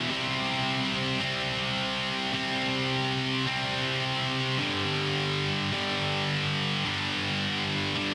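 This dark, brooding rock excerpt moves at a slow 53 BPM in 6/8, with a single double-tracked electric guitar, scooped, bright and high-gain, playing picked and up front between G2 and C4, its distortion trailed by tape echo. It opens on a C5 chord at 0.1 seconds and shifts to G5 at 4.6 seconds, tuned slightly sharp to A4 = 441 Hz. A moderate large-studio reverb with a 1.2-second decay and digital ambience surrounds the part, and the dense modern master is heavily limited.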